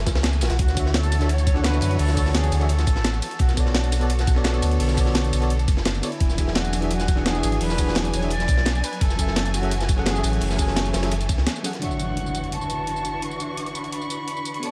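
A deep, full sine sub bass with an added octave sits up front, anchoring this rolling, soulful liquid drum and bass excerpt at 171 BPM, cut from a longer piece. Lush, bowed strings hold sustained chords with expressive vibrato and sidechain pumping, while a bell-like tine electric piano with delay adds bright, clean accompaniment over a progression moving from F#m9 through Dmaj9, Bm9 and E9. An airy, distant concert flute carries the melody from 0.4 seconds, touched with vintage 12-bit sampler grit and a diffuse ambient delay. The drums layer a thumpy, gritty electronic kick, a compressed sampler-style breakbeat kit with hi-hat, ride, snare and tambourine, and a dark, saturated breakbeat kit in the background whose cymbals, hats, snare and room are high-pass filtered. After a brief break at 11.5 seconds, the bass, kick and filtered kit drop away and an electronic impact lands at 11.8 seconds, leaving strings, flute, piano and the sampler-style kit in a dreamy, reverb-soaked space through to 14.7 seconds.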